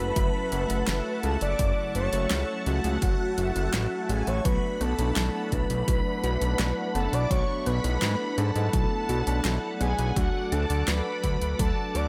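Synthwave with a moody, nocturnal feel in a straight 4/4, this excerpt from a longer piece moves from F#m7 to Bm7 at 4.5 seconds and settles on D near 10.2 seconds. A smooth, expressive sawtooth synth lead carries the melody with vibrato, chorus and tape echo. A shimmering vintage string machine of violins traces a second line above it through ensemble chorus. A lush, airy unison pad holds sustained chords with chorus, phaser and sidechain pumping, while mellow, brassy synth brass stabs sit darker in the background. A fat, saturated analog bass with an evolving filter sweep also pumps with the sidechain, and it sits up front beside a punchy electronic kick and a pop drum kit of handclaps, a fat snare and bright hi-hats. From 4.5 seconds, a round, tine-like FM pluck adds gentle, warbling arpeggios with tape echo in the background, and light reverb gives the mix some air.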